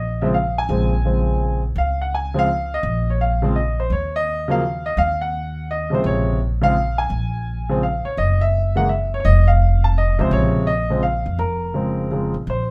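A swung 3/4 at 169 BPM drives this smoky, late-night jazz fragment in B-flat minor, tuned to A4 = 438 Hz, with a warm grand piano carrying the melody and a woody, pizzicato upright bass on steel strings holding the low end, both up front for the full 12.7 seconds. The harmony moves from Bbm7 to Ebm7 at 3.9 s, returns to Bbm7 at 6.0 s, then passes through Gb7 and F5 before settling on Bbm7 again at 10.3 s. A moderate studio reverb gives the natural-sounding piano and the bass some air, though lossy compression artefacts are audible in the recording.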